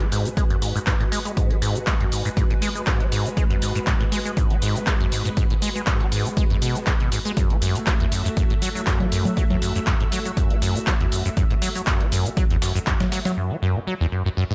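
Driving and raw, this acid house excerpt at 120 BPM in G# phrygian with a light 16th-note swing pairs a squelchy, resonant sawtooth acid bass riff, up front with subtle chorus, tape echo and sidechain pumping, against lush, slow-attack string machine chords with ensemble chorus and pumping over G#m7 moving to F#m7 at 7.4 seconds, while a dry, punchy electronic kick sits up front beside an analog drum machine's cabasa, congas, handclaps and hi-hat and a very quiet, gritty, pitched-up breakbeat kit of hi-hat and snare, all in a nearly reverb-free mix that ends with the bass alone at 14.5 seconds.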